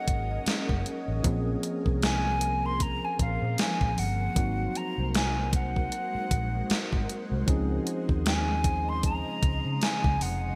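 A gated 80s digital drum machine with a thumpy kick, tape warmth and a gated reverb snare sits up front in this dreamy, romantic contemporary R&B excerpt at 77 BPM in Db major, swung on the 16ths, where a distant, airy silver concert flute with a crisp attack and digital delay carries the melody over bell-like tine electric piano, a dark, round, foam-muted fingered electric bass, and an ethereal detuned pad with ensemble chorus and phaser, moving through Bbm9, Ab9 and Dbmaj9 in a lush hall with bright 1980s-style digital production.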